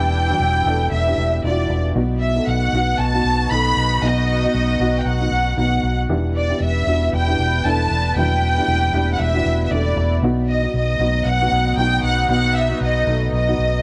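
Dramatic and bittersweet, this pop excerpt moves at 116 BPM in E minor with a light 16th-note swing, cycling between Em7 and B across its 13.8 seconds. A lush, vibrato-rich violin section carries the melody up front, over a dark, woody upright piano with short sustain and a round, punchy, foam-muted electric bass. Behind them, a bright, evolving pad with chorus holds sustained chords, all set in light reverb and small-room ambience.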